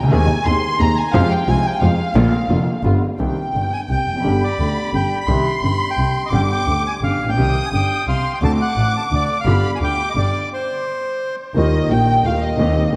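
A reedy, bright bandoneon carries the melody from 3.7 s, touched with delay, in this tense, passionate tango excerpt in 3/4 at 173 BPM, played with a rubato feel and settling into C harmonic minor. A warm, expressive bowed violin section sings a high second line with vibrato, while a clear, polished grand piano with lush chorus accompanies up front and a rich, smooth bowed double bass anchors the low end; a dark, woody symphonic string section adds very quiet, distant stabs only in the opening seconds. Everything pauses at 10.5 s before the opening material returns at 11.6 s, all set in a dreamy, reverb-soaked church space with a cassette-tape character.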